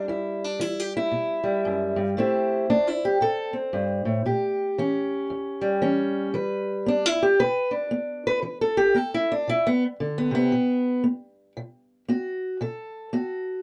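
A swung 4/4 pulse at 115 BPM, with a 60% lilt on the eighth notes, carries this short cut from a longer acoustic country blues piece in E minor. The mood is mournful and brooding, set entirely by a single fingerpicked steel-string parlour guitar that plays alone from 0.0 to 13.6 seconds, ranging from E2 up to B4. Its tone is dark and boxy, and it sits up front in a moderate booth ambience. The harmony moves from Em to Am7 at 2.2 seconds, then through A#dim7 and a lingering Em7 before settling on a B7 with its third omitted at 10.5 seconds, leaving the passage hanging on the dominant. The tuning sits slightly above standard, at A4 = 441 Hz.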